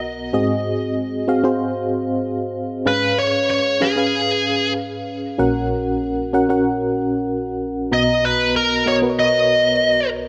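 Pop in F# major at a steady 95 BPM, this short cut from a longer piece feels nostalgic and glossy, opening with a dark, full-bodied FM electric piano with tremolo and a noise layer that carries the harmony through G#7, C#7/G#, F#/A# and Bmaj7. At 2.9 s a biting lead guitar enters up front with the melody, its picked, overdriven tone trailed by delay. A moderate plate reverb gives the whole a polished sheen.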